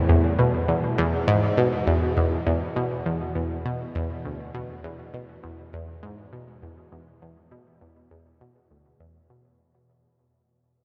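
Drenched in a vast, long-tailed reverb, this dreamy ambient fragment from a longer piece feels mysterious and expansive. A lone analog pluck sits up front in a low register, its round, nasal, detuned sawtooth tone carrying a noise layer and fast-attack, decaying notes colored by chorus, phaser and analog delay. The whole passage fades out across its 9.6 seconds.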